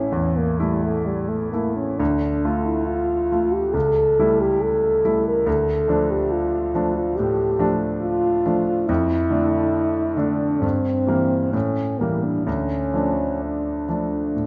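At a slow 69 BPM in 4/4, the rubato pulse breathes unevenly through this solemn, elegiac romantic excerpt in D minor for French horn and grand piano. A dark horn with light vibrato carries the melody from a distant, roomy position, while the concert grand supplies clear, natural accompaniment up front with deep bass. The harmony moves through A7/C#, Dm/F, Edim/G and A7b9 before settling back on D minor at 12.5 seconds, all within a moderate recital-hall reverb.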